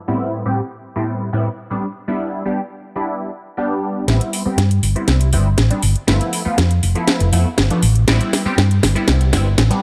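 Nostalgic and funky, this filtered disco house excerpt moves at 120 BPM in A minor, tuned to A4 = 439 Hz, with a punchy, detuned sawtooth polysynth comp carrying chorus, phaser and a low-pass filter alone through Am9 and Em7 chords. At 4.1 seconds a dark, round hollow-body short-scale fingered electric bass and a layered house drum kit, with a cracking snare and metallic hats in small room ambience, arrive up front as a build-up, drum fill and filter sweep run to the end. The harmony shifts through Am9, G13 and back to Am9 under light digital reverb.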